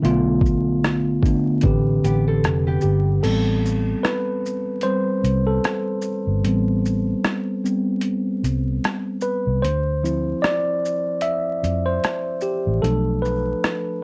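A swung 75 BPM boom-bap groove in 4/4 opens this reflective, nostalgic lo-fi hip hop excerpt in A minor, its gritty sampler-style kit pairing a thumpy kick with hi-hat, rim click, shaker and crash, over a dark, round, foam-muted fingered electric bass. A mellow, clean tine electric piano carries the jazzy minor-ninth and eleventh chords through its built-in speakers under cassette-tape softening. A small fingerpicked nylon-string guitar adds a brief delayed, plate-reverbed line from 2.0 s before the piano takes a solo over a break from 3.2 s, all of it bathed in worn, warbling tape drift and vinyl crackle.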